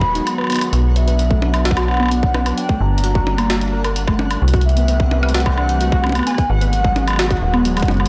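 Eerie and cerebral, this short IDM excerpt moves at 130 BPM in a straight 4/4, its slightly flat tuning adding to the unsettled air. A warbly, nostalgic lead carries the melody in a detuned, wave-folded tone with vibrato, lush chorus and tape echo, while a lo-fi tape-like pad holds sustained chords with a slow attack and long release. A dusty, vintage pluck spins arpeggios through chorus, phaser, cassette tape and tape echo, and a twinkling granular texture sparkles in the background from 0.1 seconds with an octave-up shimmer. Underneath, a metallic FM bass with tube saturation sits up front beside a tight electronic kick, and a gritty, pitched-up jungle sampler-style kit of hi-hat, high-tuned snare, toms and woodblock enters at 0.2 seconds, with a drum fill at 0.5 seconds. The chords drift from G#m7 through Bm, Gm and C6 before returning to G#m7, all set in light reverb on a blown-out, overdriven recording.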